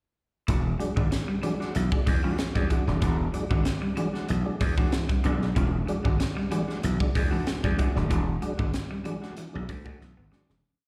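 Energetic and gritty, this short funk piece at 94 BPM in E mixolydian rides a single E9 groove, with a growly, overdriven slap bass playing a syncopated riff anchored on the downbeat with chromatic approach notes, over a crisp fusion drum kit with a high-tuned snare, punchy kick and ghost notes. A clean, fingered electric guitar with slapback echo scratches out sixteenth-note funk rhythm, a slightly broken-up picked guitar adds a muted single-note line in the background, and a round tonewheel organ with key click, chorus vibrato and fast rotary speaker supplies percussive two-handed stabs. The whole band sounds like a live gig heard through the venue's PA in a recital hall, fading out from 8.1 seconds as the drums play a closing fill at 10.0 seconds.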